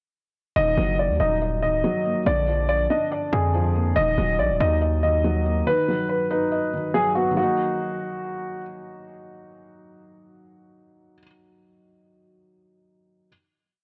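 A half-time drill groove at 141 BPM in Eb harmonic minor sets an ominous, menacing tone, as a dark, worn baby grand piano loops a long-sustained melody over a felt-muted upright piano's soft rising eighth-note arpeggio and a saturated, heavy 808-style bass with sliding sub notes that drops out at 5.6 seconds, all captured with a gritty cassette character and light studio reverb before the upright rings on alone through the final Ebm chord to 13.3 seconds.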